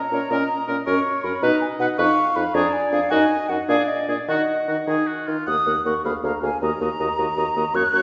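Awash in recital-hall reverb and dull at the very top, this urgent, restless excerpt from a quick classical-period wind quintet movement in Eb minor moves at 106 BPM in 6/8, with an up-front, hollow flute with vibrato carrying the melody over a clear, distant oboe second line, a smooth-topped French horn and warm clarinet in accompaniment, and a mellow bassoon on the bass, before the harmony settles back on Eb minor at 6.6 seconds.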